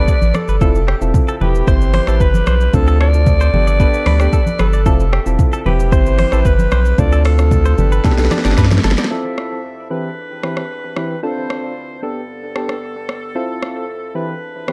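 A breathy, raspy alto saxophone sings the melody with dub echo over a sunny, joyful afrobeats groove, joined by soft, chorused electric-piano-like synth keys, a twangy clean electric guitar riff, a round analog bass, thin-skinned congas and an up-front afro-pop drum kit with a deep kick and metallic hats, while a woodwind section holds sustained chords with sidechain pumping in the background; during a drum fill, the saxophone, guitar, bass and congas have all dropped out by 9.0 seconds, leaving keys, woodwinds and drums in a dry, echo-heavy mix.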